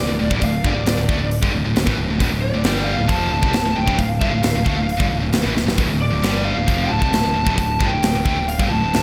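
An aggressive, heavy metal excerpt in D minor at 134 BPM opens with a dark, overdriven lead guitar melody over two bright, high-gain rhythm guitars (one scooped, one with slapback echo in the background) and a growly fuzz bass, with a tight, up-front drum kit entering at 0.3 seconds and playing a fill at 5.6 seconds, all in a big arena sound with scoring stage reverb.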